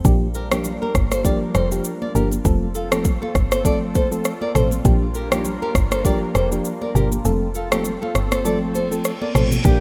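Breezy and romantic, this afrobeats excerpt moves at 100 BPM with a lightly swung sixteenth-note feel over an F chord. A mellow, round FM electric piano with a vintage warble and a thick, airy detuned pad with chorus, phaser and sidechain pumping sit beneath a woody, punchy log drum bass and an up-front electronic kit of deep kick, rim click, shaker and toms, while very quiet high-tuned congas and a bright fingerpicked flamenco guitar riff with delay and audible finger squeak add sparkle. The kick drops out at 7.3 s, a reverse cymbal and downlifter sweep in at 8.9 s, and a distant, roomy horn section with light vibrato arrives at 9.6 s, all in a rough home demo mix with light reverb and a faint mains hum.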